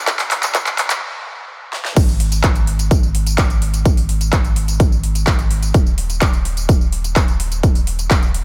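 In straight 4/4, this triumphant, anthemic festival progressive house excerpt rides a deep, thick sub bass pumping with sidechain from the start, while a big-room kit of huge snare, metallic hats, handclaps, tambourine and crash cymbal joins an up-front, punchy, overdriven electronic kick almost at once. The drums play a fill over the first second of the build-up, pause for a stop at 1.0 seconds broken by a brief fill at 1.7 seconds, then crash into the drop at 2.0 seconds, the layered drums set in a digital ambience.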